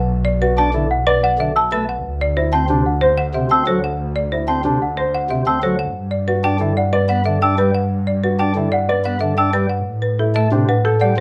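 A woody, hard-mallet folk marimba carries the melody over a lush, bowed symphonic double bass section from the opening moment of this hypnotic, urgent minimalist classical excerpt in 6/4, soon joined by natural-toned baby grand piano arpeggios at 0.4 seconds, bright flute stops with chiff on pipe organ as accompaniment at 0.6 seconds, and delicate, bell-like celesta arpeggios at 0.9 seconds, all captured by close, detailed microphones with light reverb as the harmony moves through Bm7, D7, G6 and Am11.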